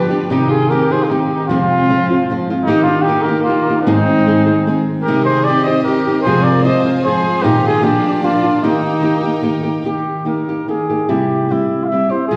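A mellow trumpet carries the melody up front in this proud, festive mariachi piece in 3/4, over a small, dark, fingerpicked nylon-string guitar and a nasal, boxy solo violin that bows an expressive second line with vibrato and portamento until 9.5 seconds, while a clear, biting chamber violin section sustains chords in the background briefly at the opening and again from 5.1 to 9.9 seconds, all within a roomy recital-hall reverb heard from further back.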